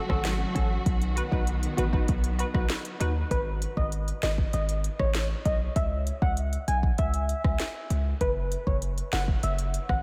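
Hypnotic and sultry, this dancehall excerpt opens with lush, bowed strings holding sustained chords alongside a crisp, detuned wavetable stab that pumps against the sidechain, both ending by 3.3 seconds. Underneath, a heavy, punchy 808-style bass and an up-front afro-pop kit with a deep kick, sharp snare, rim clicks and smooth hi-hats carry through to the end. From 3.3 seconds a round, keys-like FM lead takes the melody with chorus, vibrato and tape echo, all set in a dreamy mix soaked in cathedral reverb.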